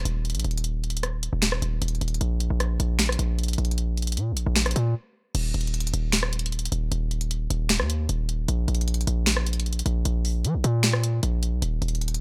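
A half-time feel at 153 BPM in 4/4 drives this brooding, menacing trap excerpt, tuned to A4 = 436 Hz, with an up-front electronic drum kit of sharp snare, bright hi-hats, rim clicks, finger snaps and crash cymbal, re-recorded in a small room. A punchy, heavy 808-style bass runs from Eb1 to F3, its sine tone carrying a noise layer with a fast attack that then decays. The dry, gritty hardware recording has little reverb, and a short break at 5.0 seconds leads into a new section at 5.3 seconds that carries on until the cut at 12.2 seconds.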